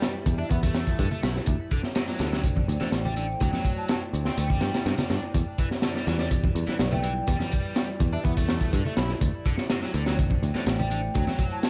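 A crunchy, saturated breakbeat drum kit with a high-tuned snare and tight kick sits up front in this funky, gritty 124 BPM breaks excerpt, joined by a round, foam-muted picked bass, a biting double-tracked overdriven guitar riff with dub echo, very quiet ringing congas, a deep detuned analog pad pumping under chorus and phaser on Em7 and D9sus4, and a mellow baroque flute melody with vibrato, 12-bit sampler grit and old-record patina drifting in the background of an echo-heavy mix laced with vinyl crackle.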